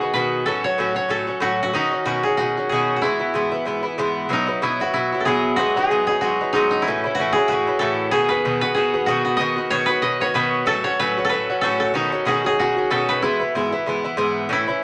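A dry, woody koto plucked with fingerpicks carries the melody up front, over an Irish bouzouki whose metallic, picked double strings supply the accompaniment in this rollicking, bright Celtic folk fragment of a longer piece, swinging at 188 BPM in E major through two passes of the same theme, with a moderate club reverb around both.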